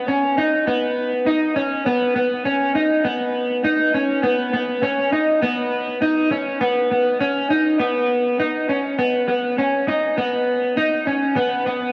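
A lone electric guitar opens this dreamy, blissful dream pop fragment, picked with a dark, slightly broken-up tone that sits up front in the mix. It plays by itself from 0.0 to 11.9 seconds, staying in a narrow register between B3 and D#4 in B major, tuned a touch low to A4 = 439 Hz. Lush chorus and tape echo thicken the guitar's sound, while a wet hall reverb with a long 2.7-second decay surrounds it. The whole recording carries the worn, warbling character of old cassette tape, its pitch drifting. Moving at 101 BPM in a straight 4/4, the short passage is cut from a longer piece.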